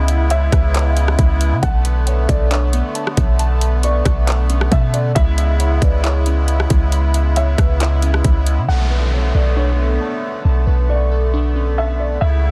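Atmospheric cloud-rap with a hazy, melancholic half-time feel, built on deep, boomy 808-style bass and up-front trap drums with a hard-clipped kick and metallic hats that drop out at 8.6 seconds, while a reedy, shimmering musette accordion pumps sustained chords, glassy digital keys with chorus and delay arpeggiate in the background, a soft felt-muted upright piano carries a mellow, filtered melody, and an electronic downlifter enters at 8.7 seconds, all in a dense, heavily limited mix with little reverb.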